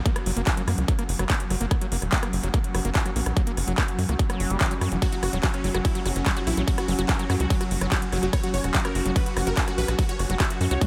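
Lightly reverberant and driving, this alien psychedelic trance excerpt pairs a punchy up-front kick and a big-room dance kit of metallic hats, handclaps, ride, rim clicks and toms with a tight sawtooth sequencer bass, a squelchy distorted acid riff in the background, a swarming detuned drone and a warbling lo-fi tape-like pad, both pumping under the kick, while a barely audible downlifter ends by 1.7 seconds, a bright, airy supersaw stab with 12-bit grit and delay enters at 5.0 seconds, and a faint nasal vowel-sweep wobble bass surfaces at 6.1 seconds.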